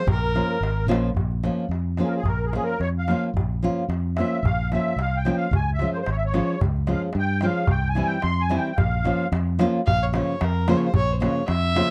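A dark, nasal bowed fiddle and a shimmering musette accordion open this restless, virtuosic Balkan wedding-band excerpt in a swung 2/4 at 110 BPM in Bb dorian sharp4, the accordion soon taking a reedy, vintage-toned solo from 1.2 seconds over a fingerpicked nylon-string guitar with audible finger squeak, a direct, amped fingered electric bass and a crisp, deep metal-shell darbuka, before the fiddle's gut-string tone returns up front at 9.9 seconds, all captured in a dry, close 1970s-style studio sound with light reverb.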